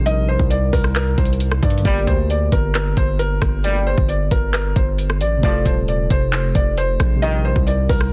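A dry, dense and heavily limited mix opens this dark, hard-hitting trap excerpt in G minor, moving at 134 BPM with a half-time feel over Cm7, Gm and F chords. A soft, muted felt-muted upright piano carries the melody with audible action noise, over a worn, slightly out-of-tune tine electric piano and a saturated, aggressive 808-style bass. Up front, a trap kit drives with a knocking kick, metallic hi-hats, handclaps and rim clicks entering at 0.1 seconds, while a bright brass ensemble with light vibrato adds low classical-style stabs from 1.9 to 7.5 seconds.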